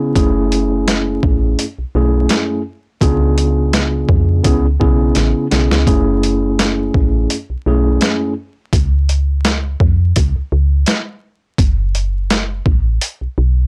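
An overdriven, sampler-style boom-bap drum kit sits up front with a thumpy kick, medium-tuned snare and hi-hat, swinging gently at 84 BPM in F# minor and dropping in a fill at 5.2 seconds. A mellow tine electric piano with cassette-tape colouring and filtering voices chords such as F#m9, C#7b9 and Amaj9 until 8.3 seconds, while a soft, round, woody FM bass anchors the low end. The reflective, gritty mood comes through a blown-out, overdriven recording with vinyl crackle and light reverb, in a short cut from a longer piece.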